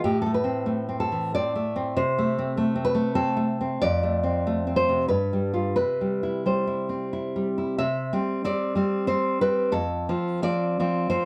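Romantic solo classical guitar in a rubato 3/4 at 81-102 BPM, wistful and passionate, with an up-front, full-bodied, fingerpicked nylon-string guitar, warm with fresh strings and touched by finger squeak, moving from A minor into C major from 3.8 s through Dm7/F and G7 chords in moderate studio reverb, in a short cut from a longer piece.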